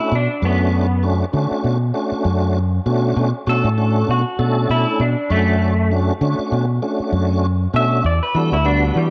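Bathed in a moderate spring reverb, this brooding, mournful soul blues excerpt features a dark, slightly broken-up electric guitar with analog chorus playing a lo-fi, compressed solo through a small old amp, over a lightly overdriven tonewheel organ with key click and slow rotary swirl and a round, punchy fingered bass, with the harmony moving from Bm7 to Em7 at 8.0 seconds.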